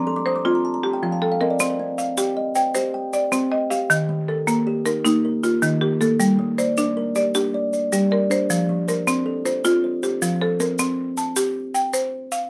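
A ringing, hollow-boxed kalimba fill opens this hypnotic, trance-like southern African traditional piece in an mbira-style interlocking cycle, alongside a dry, buzzing marimba struck with hard mallets, both playing up-front arpeggios in 12/8 at 104 BPM in C dorian over F, Cm, Eb and Gm; grainy maracas join at 1.6 s, and the kalimba stops at 11.0 s as a closing passage settles on C5, all captured by close, detailed microphones with light reverb.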